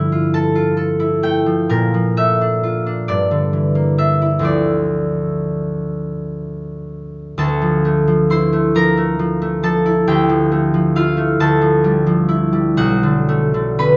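Wistful and mysterious, this rubato classical excerpt in 6/8 features a solo concert harp, bright, fingerpicked and ringing up front under close, detailed microphones and light reverb, spanning B1 to C6 as rich extended chords drift from G13 through Dm9 and Dm11 before closing on Bm9 at 12.8 seconds.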